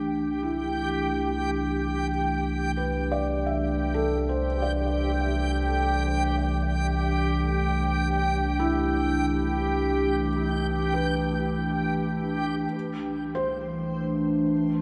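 Heard in a vast, echoing space with a long, wet cathedral reverb, this short ambient passage, cut from a longer piece, drifts at 51 BPM in a straight 3/4 in C major, peaceful and warm in mood. A warbling, tape-like pad with a detuned, lo-fi, nostalgic character holds sustained chords from C2 to G4, its slow attack and long release softened further by chorus and its own reverb. Beneath it, a round, deep sine sub bass sustains a low C until 12.7 seconds, while a reversed, granular texture with a dreamy, swelling quality sits up front in the high register. From 0.4 seconds, a felt-muted upright piano plays mellow, intimate arpeggios through a delay, soft and natural in tone. The harmony rests on Cmaj7 before settling onto a plain C chord at 12.7 seconds for the closing moments.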